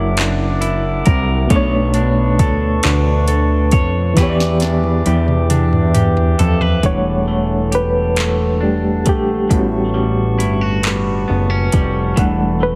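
A slow six-eight groove at 45 BPM rolls with a straight, sultry sway in E dorian, carrying a yearning mood through this fragment of a longer slow R&B piece. Up front, a smooth, electronic drum kit with a soft kick, sharp snare, metallic hats, handclaps and toms is overdriven, and it plays a drum fill from 4.2 to 6.8 seconds. Beneath it, a fat analog bass with a detuned sawtooth tone, fast attack and decaying notes sits heavy and close. A bright, reedy electric piano with light overdrive and fast tremolo, heard through its built-in speakers, carries the accompaniment before taking a solo from 6.8 seconds onward. An electric guitar, twangy, fingered and slightly broken-up, plays a second line in spring reverb, while a glass harmonica holds pure, ethereal chords with a slow attack and airy beating. Chords move from F#7b13 through Bm9 and Em7 to Em11 and A13, all pressed into a heavily compressed radio sound with light reverb.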